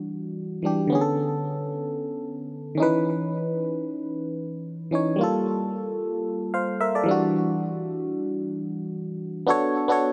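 Lightly reverberant and up front, this hypnotic, soulful amapiano excerpt at 112 BPM in B minor, with a gentle 16th-note swing, features a barking FM electric piano playing solo for the full 10.1 seconds, its biting, percussive fast-attack tones with a noisy edge decaying through chorus and delay as it moves through lush minor ninth chords from Em9 to Bm9, C#m9 and Gm9.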